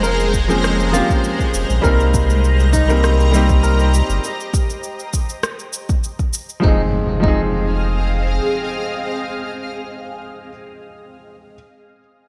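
A grand piano with audible action noise opens alongside a shimmering, detuned ambient pad, a clean, picked electric guitar playing arpeggios in the background, a round sine sub bass, and tape-warm electronic cabasa and rim click, with an overdriven, layered electronic kick joining at 0.3 seconds. The mood is smooth and wistful sunset chillout in a straight 4/4, with chords moving from Bbm9 to Cm7 before settling on Fm7 at 6.6 seconds. The piano sits up front, intimate and natural, with delay. The guitar also carries delay, while the ethereal, bright pad adds chorus, phaser, its own reverb and a granular octave-up layer with a slow attack and long release. The deep kick, re-recorded in a large room, and the sustained sub bass anchor the low end up front, and at 6.6 seconds the cabasa and rim click stop as a background electronic impact arrives, all set in light reverb and digital ambience in this fragment of a longer piece.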